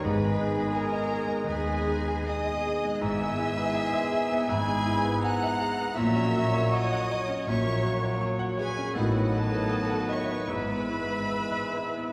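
Classical romantic movement for piano and orchestra, lyrical and lush with a flexible rubato feel, in which a clear concert grand piano in the background carries the melody alongside a vibrato-rich chamber violin section, while studio violins, a very quiet dark clarinet, a silver flute and an oboe weave second lines, a bassoon and a very quiet viola section accompany, mellow French horns and a trombone section sustain chords, a distant trumpet adds stabs, and bowed cellos and double basses hold the bass until 11.2 seconds, the ensemble heard from further back in a reverberant scoring-stage room.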